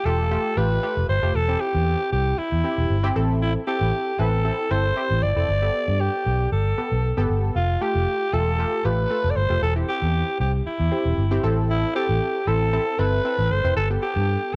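A straight 4/4 pulse at 116 BPM drives this summery, upbeat dance-pop fragment in C major, cut from a longer piece. A raspy alto saxophone carries the melody up front from the first moment, its gritty, pop-style solo colored with light vibrato and treated with a cassette tape effect and analog delay. Beneath it, a funky polysynth comp built on detuned sawtooth tones with ring modulation and wave-folding plays plucky, fast-attack chords treated with chorus. A vintage muted fingered electric bass sits prominently in the mix, dark, round and punchy with a foam-muted, amped character. The harmony cycles twice through Fadd9, C/E, Am and Gadd9, and the whole take has the small-room ambience and light reverb of a home cassette recording.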